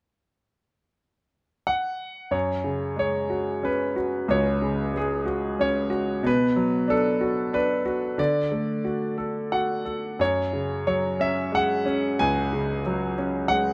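A bright grand piano carries this moody, cool classical fragment alone, entering at 1.7 s and playing through to 13.7 s across a range from C#2 to G#5. The playing is lyrical and rubato, set in F# minor and 3/4 at around 91 BPM, with the instrument tuned to A4 = 441 Hz. From 2.3 s the harmony rests on F#sus2, then moves through Bm7 and D before returning to F#sus2. Close, detailed microphones place the piano up front with an intimate, natural sound and audible action noise, while a light reverb adds a touch of space. Cut from a longer piece, it leaves a brilliant impression.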